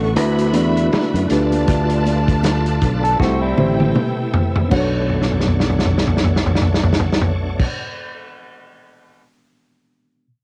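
This bittersweet, cinematic excerpt of lush 1970s-style soul at 79 BPM with swung 16ths features an up-front, muffled vintage drum kit with a tight kick alongside a growly, punchy fingered bass, a gritty overdriven tonewheel organ with fast rotary speaker, a reedy electric piano with fast tremolo sitting in the background, a dark, woody string section, very quiet high-tuned congas, and a slightly broken-up guitar riff with spring reverb from 3.0 to 4.7 seconds, all coloured by a lo-fi home cassette recording.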